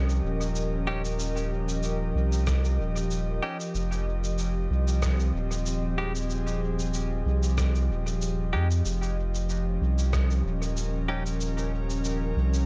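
Bathed in light reverb, this hazy, meditative stretch of ambient dub, cut from a longer piece, moves at 94 BPM in 4/4 with a gentle swing on the 16ths, tuned to A4 = 435 Hz and drifting between Eb7 and Fm9. An airy, breathy pad with chorus holds sustained chords up front alongside a deep, round analog bass, while a muffled, tape-warm electronic shaker and rim click trail dub echo. Bright, twangy stabs from a clean, direct-recorded electric guitar enter at 0.9 seconds, also echoing, and a very quiet, thumpy electronic kick drum sounds from 2.5 to 10.3 seconds.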